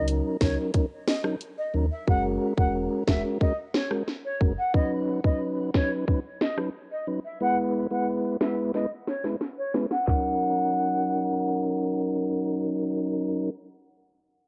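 This short cut from a longer piece has a hazy, lo-fi home-cassette sound, softened by a low-pass filter and set in light reverb with a digital ambience. It is a sultry, tough dancehall groove at 90 BPM in 4/4 with a straight feel, in E-flat Phrygian, moving through Ebm7, Gbadd9, Badd9 and E before returning to Ebm7. An up-front tonewheel organ carries the accompaniment, its clean, flute-like tone churning through a fast rotary speaker, while a deep sine sub bass with an added octave holds down the low end with full, sustained notes until 4.6 seconds. The produced electronic island pop kit sits forward, with a tight kick, sharp snare, handclaps, rim clicks, hats and toms, and it builds to a drum fill before dropping out at 10.2 seconds. Above it all, a distant, airy jazz flute plays the melody with tongued notes and expressive vibrato, and a filter sweep runs through the opening section until the organ is heard alone at the close.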